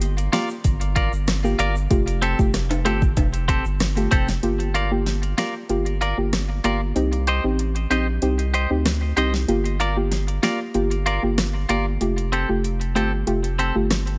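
A sultry, tough dancehall groove opens on a deep house drum kit with a fat snare and metallic hats, a thick saturated sub bass, a dark chorused pluck and bright egg shaker and timbales, joined at 0.3 s by a twangy clean electric guitar playing arpeggios through tape echo, until at 4.4 s the shaker and timbales stop and the kick drops out of a dry mix moving through Gm7, Fadd9 and Cm.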